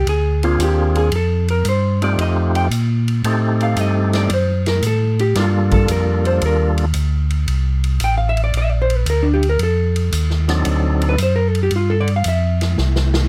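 Greasy and soulful, this soul jazz organ trio swings in 4/4, cut from a longer piece. A dark, clean hollow-body electric guitar takes a picked solo across the whole passage. Beneath it, a mellow tonewheel organ carries the bass line with a round tone, audible key click and a slow rotary speaker, sitting up front. A second, percussive tonewheel organ with second-harmonic percussion and a full sound plays the melody, entering at 0.4 s, dropping out at 6.9 s and returning briefly at 10.5 s. The acoustic drum kit has a natural big-room sound with a punchy kick and medium-tuned snare, using hi-hat and ride cymbal before a short fill closes the passage. The recording is close and detailed with little reverb, moving through rich extended chords such as Bb9, D7b9 and Fmaj9.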